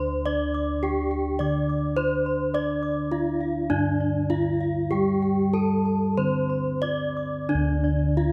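A moderate scoring-stage reverb surrounds this serene Javanese gamelan fragment in a straight 4/4, cut from a longer piece, where a close-miked, dry bronze metallophone carries the melody up front with a wooden mallet and paired tuning that shimmers, a mellow, padded-mallet metallophone plays the accompaniment beneath it, a bright, horn-struck metallophone ripples arpeggios higher up, and dark, round bossed gongs anchor the bass, all four sounding together from 0.0 to 8.3 seconds.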